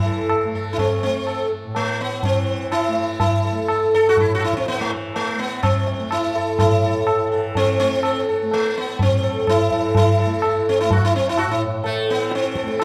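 A long, resonant concert-hall reverb wraps this short passage of Hindustani classical music, lifted from a longer piece, and gives it a solemn, introspective air. The plectrum-plucked sitar sits up front and carries the melody, its buzzing tone ringing with sympathetic strings. Beneath it, a softly plucked tanpura holds a warm, shimmering drone at a much lower level, sustaining the ground from the very first moment. The tabla joins at 0.3 s, close and high-tuned, its ringing strokes marking out a seven-beat cycle with a straight feel. Across the whole 12.8 seconds the pace keeps speeding up, pulling the meditative mood steadily forward.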